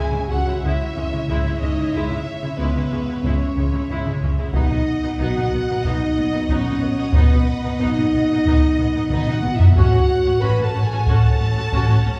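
Relentless and heroic, this epic orchestral film-score excerpt opens with a rich chamber violin section singing the melody over a clear symphonic violin second line, lush viola accompaniment, dark soft-attack French horn chords and a bass of smooth cello and distant double basses. A taiko ensemble with heavy sticks joins at 4.5 seconds and drives through a fill at 9.1 seconds, all bathed in a wet scoring-stage reverb heard from further back in the room.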